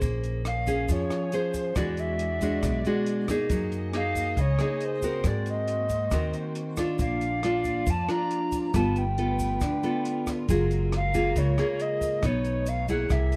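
An intimate, smooth bossa nova fragment at 138 BPM opens with up-front fingerpicked classical nylon-string guitar, a woody, growly pizzicato upright bass, and a compact cocktail kit of hi-hat, punchy kick and rim click, while a veiled, con sordino string section holds distant bowed chords and a grainy tube shaker sits in the background. At 0.5 s a mellow alto recorder enters with an airy, tongued melody, its chiff and vibrato sounding expressive yet distant. The harmony moves through rich extended chords from Bbm9 to B9 in a dark production with light reverb.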